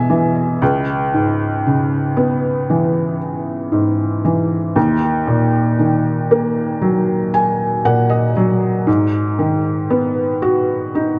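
Melancholic and heartbroken, this slow folk excerpt features a solo felt-muted upright piano, its soft, intimate, thin-felt tone placed up front with tape echo, moving through Emaj7, C#m7, D#m and G#m7 inside a dark production bathed in moderate concert hall reverb.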